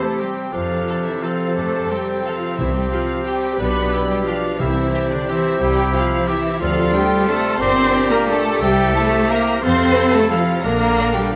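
A festive, elegant classical passage in F major, cut from a longer piece, moves in 3/4 at 178 BPM with uneven, rubato beats that give the phrasing a flexible, breathing feel. The melody belongs to a distant, very quiet violin section, lush and expressive with rich vibrato, entering at 0.2 s. Around it, a smoother, evenly bowed second violin section joins flute, oboe and clarinet in second lines: the silver flute sounds pure and hollow, the oboe soft-edged with light vibrato, and the clarinet sits smoothly in the background. Underneath, violas and a mellow bassoon supply accompaniment, a tight French horn section holds sustained chords, and the cello section carries the bass with portamento, joined at 0.5 s by double basses with a soft attack. Calf-headed timpani on medium mallets add very quiet strokes between 2.6 and 5.1 s, while the harmony travels from C and F through Dm7 and Gm before turning to Bb, all bathed in a moderate scoring-stage reverb.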